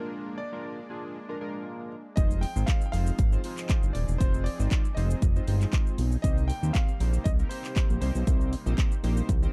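A straight 4/4 dance-pop groove at 118 BPM kicks in at 2.2 seconds, when a punchy, layered electronic drum kit with bright hats, claps, shaker and toms arrives alongside a fat, saturated analog bass that pumps to the sidechain, with a very quiet, crisp group handclap joining at 2.7 seconds to add a human touch and a drum fill landing at 9.3 seconds. Over the chords Bb7, Fm7 and Cm7, a clear, intimate grand piano with tape echo and audible action noise carries the melody, while a glossy, retro chorused polysynth supplies the accompaniment and a smooth, pumping supersaw holds sustained chords in the background. The mood is energetic yet bittersweet, in a dark, dry production with little reverb, cut from a longer piece.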